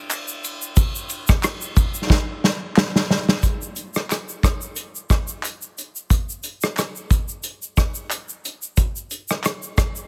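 Indie pop in a lonely, mellow mood, this short clip cut from a longer piece moves at an unhurried pace in 4/4 with a light swing on the sixteenths. An unplugged acoustic drum kit sits up front throughout, played with bundle sticks across hi-hat, kick drum, ride cymbal, rim click, shaker and snare, giving a small-room character with dark cymbals, a medium-tuned snare and a punchy kick. A group handclap adds a human, crisp layer recorded close and dry, sitting lower in the balance than the kit and dropping out at 9.6 seconds. A drum fill from 2.1 to 3.4 seconds closes the opening stretch and leads into a second section that carries on to the end. The overall sound is heavily compressed with a radio-like quality and little reverb, keeping the percussion tight and present.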